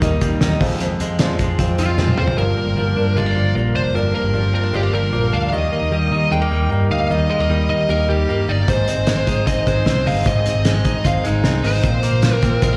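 Opening on cloth-damped, thuddy drums with a fat snare alongside a round, foam-muted bass, clean direct electric guitar arpeggios with subtle chorus and slapback, and a very quiet shimmering twelve-string acoustic guitar and slightly detuned woody upright piano, this nostalgic, breezy jangly indie pop excerpt at 152 BPM brings in a dark, fuzz-distorted lead guitar melody with plate reverb and digital delay at 1.8 seconds, drops the drums after a fill at 2.4 seconds, and brings them back at 8.7 seconds, all heard as a live gig through the venue's PA in recital hall reverb.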